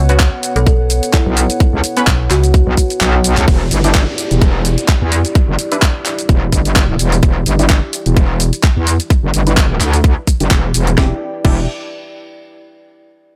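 A metallic wobble bass drives this bouncy, swaggering bass house excerpt, entering at 1.3 seconds with an aggressive, saturated FM tone that sits bright and up front, thickened by chorus and overdrive and pumping against the kick. At 128 BPM in 4/4 with a swung sixteenth-note feel in E dorian, the piece opens on a drop. Here a decaying metallic FM bass, warmed by tube saturation, is joined by a soft, woody kalimba melody ringing with delay in the background. A tight, overdriven electronic kick sits up front alongside a garage drum kit of cracking snare, handclaps, hi-hat, shaker and crash cymbal, both set in a small room ambience. The kick drops out for a drum fill before the section shifts from Bsus2 to Em7 at 3.5 seconds. A background downlifter then passes, while a filter sweep works over the bold, punchy orchestra-hit-like synth stab, which carries a detuned sawtooth layer, ring modulation, delay and a cassette-tape grit. 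Beneath it all, a deep, nasal analog pad holds moody sustained chords with chorus, pumping with the sidechain until 11.2 seconds, and the whole track sits in a digital ambience.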